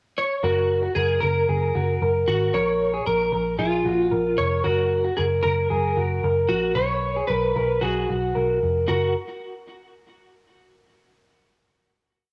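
A youthful, breezy piece of jangly indie pop, heard as a home recording on cassette bathed in moderate spring reverb, where a clean, up-front electric guitar opens with a pickup before carrying a motif-based melody colored by ensemble chorus, cassette tape and tape echo. Just after, a slightly broken-up guitar through a small old amp rings out a picked arpeggio figure, while a foam-muted, round and punchy vintage bass drives steady eighth notes beneath. A single verse moves through F#, A#m and B5 before settling on a final F# chord from 8.9 seconds.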